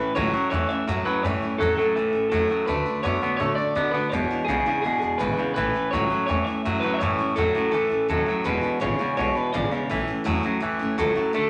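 A slightly broken-up electric guitar, played through a small old amp, carries the melody in this upbeat, retro rockabilly passage cut from a longer piece. A clean, scooped, up-front twangy guitar riffs low beneath it, while a full-bodied dreadnought acoustic picks out chords that move from A to D and E7. A woody, thumpy pizzicato upright bass joins at 0.2 s, all set in a wet, large studio reverb.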